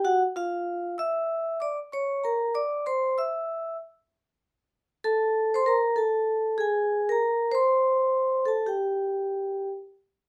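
Hip hop at 96 BPM in 4/4 with a swung sixteenth feel, this smoky, cool cut from a longer piece sits in G dorian and features a lone vibraphone played with medium mallets from 0.0 to 9.7 seconds. The vibraphone, with its motor off, sounds metallic and ringing, placed up front as it moves through sparse chords such as Dsus2, Bbm, Cadd9 and Am between unaccompanied gaps. A wet studio ambience and a rough home-demo mix give the short passage a loose, unpolished character.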